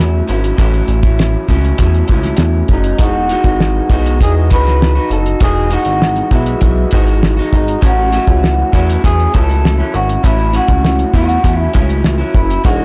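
This hazy, dreamy bedroom-pop excerpt opens on a dark, lo-fi electric guitar played fingered through a small old amp, slightly broken-up and compressed, with subtle chorus and a warbly pitch drift. Beside it sits an up-front, retro synth bass with a glossy tone that blends pulse-wave and sawtooth sounds, with pulse-width modulation, a filter pluck, a moving notch and tube saturation. At 0.3 seconds a cloth-damped, thuddy acoustic drum kit enters, dry and smooth with a fat snare, tight kick, hi-hat and a rolled-off top. At 2.7 seconds a second electric guitar takes the melody, picked and twangy with subtle chorus and slapback echo. The straight 4/4 groove moves at 100 BPM, tuned to A4 = 437 Hz, over chords that shift from A6 to Emaj9 and back to A6. The whole mix is blown-out and overdriven, with light studio reverb and nothing above 7.6 kHz.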